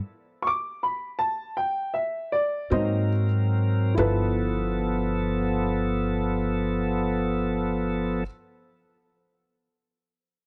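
Soulful, gritty slow blues in 12/8 at 46-58 BPM in G mixolydian, opening with a dark, boxy baby grand piano as the tempo slows through the first 4.0 seconds, joined at 2.7 seconds by a reedy tonewheel organ with key click and slow rotary speaker and a woody pizzicato upright bass, moving over G69, Ab9 and G13 in a dry, close 1970s-style studio sound cut from a longer piece.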